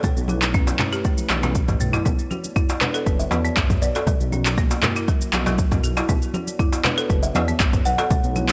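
Afro house with a spiritual, driving mood, where an overdriven electronic kick sits up front beside a tape-warm afro-pop kit of handclaps, shaker and toms with a fill at 1.0 seconds, while soft-handed congas and a crisp metal-shell darbuka add percussion, a rumbling detuned saw bass pumps underneath, a bright hardwood marimba plays arpeggios through dub echo, a moody analog pad with chorus holds sustained chords in the background, and a mellow, airy kalimba melody enters at 2.8 seconds over chords moving from A/B to Bm and F#7/B in this excerpt from a longer piece.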